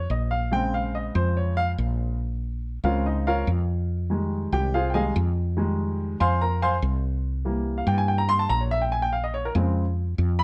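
Sultry and fiery, this Afro-Cuban jazz passage moves at 143 BPM in a straight 4/4, set in F minor with tuning at A4 = 441 Hz. A warm upright piano with short sustain takes a solo across the full 10.4 seconds, ranging from Db3 up to C6. Beneath it, a woody fretless electric bass plays throughout, its dark, round and punchy tone sitting between Bb1 and G2. Both instruments sit up front in a light reverb, and the harmony travels through Bbm7, Fm7 and C7 before returning to Bbm7 at 8.9 seconds. The clip is a short section taken from a longer piece.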